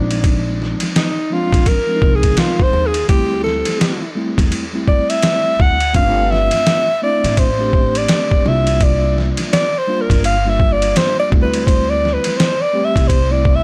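A jazz-hop groove at 84 BPM in 4/4 swings its sixteenths over a sampler-style trip hop drum kit, compressed and pitched down, with a thumpy kick, a medium-tuned snare, hi-hat and ride sitting up front in a gritty, tape-warm haze. Beneath it, a woody, dark upright bass plays pizzicato low in the register, while a mellow, clean tine electric piano accompanies through its built-in speakers from the start. At 1.0 seconds a breathy alto saxophone enters for a jazz-style solo, up front with vibrato, subtone and a touch of tape echo. The harmony drifts through suspended ninth chords, moving from Bb9sus4 to D9sus4, G9sus4 and C9sus4 before returning to D9sus4. The mood is smooth and warm, captured in a dry, gritty hardware recording with little reverb, and this short cut from a longer piece ends at 13.6 seconds.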